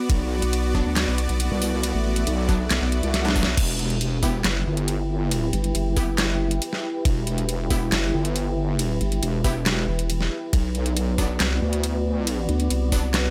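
Light reverb gives this heavy wobble dubstep excerpt its space, and the mood is chaotic and aggressive in a half-time feel. Two up-front wobble basses carry the low end: one is heavy and saturated with overdrive and chorus, and the other is nasal and formant-filtered, joining at 0.4 seconds. A knocking electronic kick and a layered dubstep kit, with deep snare, metallic hats, handclaps, crash and ride cymbals, drive the drop, with a drum fill from 3.1 to 3.6 seconds. A bright supersaw pad holds sustained chords through a low-pass filter and sidechain pumping, while a moody ambient pad with chorus and its own reverb sits in the background. Punchy supersaw stabs, coloured by lush chorus and digital delay, arrive at 0.7 seconds over chords moving from Bm to Em and back to Bm.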